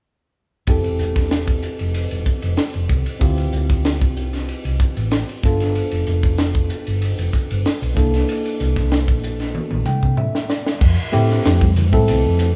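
Recorded live in one room with light reverb, this slick, funky electric jazz fusion snippet is driven by a punchy, gritty, up-front fusion drum kit with a high-tuned snare and a pumping small-room sound, a dark, round hollow-body short-scale fingered electric bass, and a clean tine electric piano heard through its built-in speakers, moving through Fmaj9, Dm11, G7 and C13 until the drums and piano share a fill at 9.6 seconds, landing on Fmaj7 at 10.8 seconds, where soft-handed, ringing congas briefly join in the background at 11.1 seconds.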